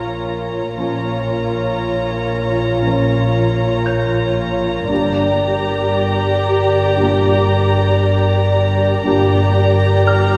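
A tense, mysterious suspense film cue at 58 BPM opens with an intimate, sul tasto violin section carrying a soft-attack melody over a woody second violin line, lush dark violas, floating, distant cellos and dark, distant double basses, a glassy, ethereal glass harmonica holding chords, and a felt-muted upright piano with audible action noise in the background, while mellow French horns and very quiet trombones sustain chords from 0.8 to 9.4 s as the harmony moves from Bb minor to G minor in a reverberant concert hall.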